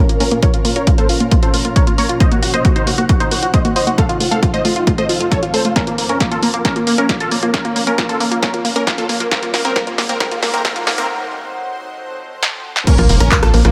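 Uplifting trance with a driving, bittersweet feel, built as a filter-swept build-up over a Bbm, Cdim, F progression, with a detuned sawtooth supersaw stab carrying the melody through phaser and delay while a lush unison pluck arpeggiates and a shimmering, ethereal pad holds chords in the background, all pumping against the sidechain. A dry, punchy analog drum machine with crash, claps, hats, rim click and snare joins the up-front electronic kick, fills from 5.8 seconds and breaks at 11.1 seconds as a very quiet riser rises toward the impact. At 12.9 seconds the impact lands on Bbm, bringing in a catchy, mellow plucky unison lead and, just after, a tight, nasal sequencer bass, all within a moderate lush hall reverb.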